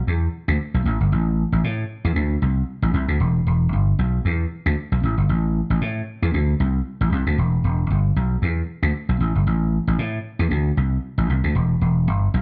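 A moderate reverb from a large studio surrounds this short funk fragment, lifted from a longer piece, giving the single instrument a sense of space behind it. A vintage electric slap bass carries the whole passage alone, entering at 0.1 seconds and playing through to 12.4 seconds. Its amped, growly tone sits up front and hits with a punchy attack, staying low in its register between E1 and A2. The groove in 4/4 carries a light swing on the sixteenth notes, which gives the line a slick, danceable feel.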